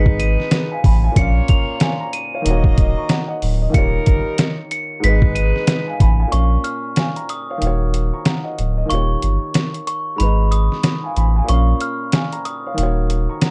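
A dark, warm production with little reverb frames this reflective boom-bap hip-hop clip in Eb minor, moving at 93 BPM with a swung sixteenth-note feel. Up front, a sampler-style drum kit sounds compressed, pitched down and muffled, with a thumpy kick, a medium-tuned snare and hi-hat, while a deep, thick sub bass with a saturated, triangle-like tone holds the low end with sustained notes. A woody upright piano with short sustain carries the accompaniment through chords cycling among Abm, Bbm, Ebm7 and Eb7, and a metallic, bell-like glockenspiel struck with soft plastic mallets rings out the melody high above, its vintage, band-limited tone touched by slapback echo. A jazz-style saxophone section with vibrato adds ensemble stabs, also with slapback echo, until it drops out at 6.0 seconds. From 6.3 seconds a break section begins, with the glockenspiel stopping at 12.9 seconds before the piano and drums carry on to the close of this cut from a longer piece.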